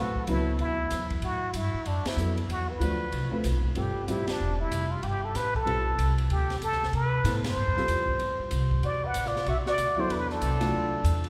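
Hypnotic and cool, this modal jazz excerpt swings at 189 BPM in 4/4, its harmony resting on E9sus4 before moving to G9sus4 at 3.8 seconds and returning to E9sus4 at 8.8 seconds. A plunger-muted trumpet carries the melody up front with a wah-wah, jazz-style voice, while a woody pizzicato upright bass with steel strings sits close and warm beneath it. A dark, intimate baby grand piano comps with short sustain and audible action noise, and an acoustic drum kit enters at 0.2 seconds with dusky cymbals, a high-tuned snare and a boomy kick. The band hits accents together at 2.0, 4.2 and 7.4 seconds, and a clear alto saxophone slips in near the end with scooped notes as a second line. The whole group sounds as if captured in a church or concert hall, bathed in a long, wet reverb that lingers around every phrase.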